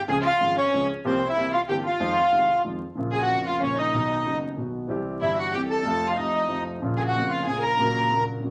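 Tango in a rubato three-four feel, passionate and melancholic, cut from a longer piece: a reedy, dark bandoneon carries the melody up front, while a smooth, bowed violin section with vibrato sings an even second line close beneath it. A warm, intimate concert grand piano supplies the accompaniment with deep bass and audible action noise, giving a vintage touch, and the harmony shifts into a new section at 3.0 seconds. Moderate studio reverb surrounds the ensemble, and vinyl crackle and lossy compression artefacts colour the sound until the piano's final notes at 8.5 seconds.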